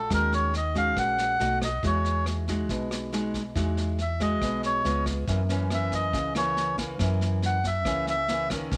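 Bossa nova at 139 BPM with an intimate, smooth mood, this short excerpt features a reedy, breathy melodica playing an up-front solo melody over fingerpicked classical nylon-string guitar with audible finger squeak, a dark, round hollow-body short-scale electric bass, and a vintage brush kit with punchy kick, rim click and rolled-off top, all set in light reverb and studio ambience as the chords move from Ebm7 through B7 and Emaj9 to Db7 and Gb7.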